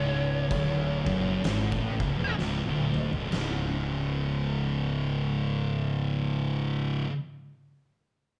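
Brooding and hypnotic, this short stoner and doom metal excerpt crawls at 64 BPM with a swung feel, as two thick fuzz guitars, one up front and one in the background, grind a low riff over a growly, overdriven fingered bass, while a compressed fuzz lead guitar sings a brief melody until 2.3 seconds and an oversized low-tuned drum kit with a boomy kick, fat snare and dark cymbals plays from 0.5 to 3.6 seconds, working through a fill before the harmony shifts from C#m to C#5, all captured as a band playing live in one room with light reverb.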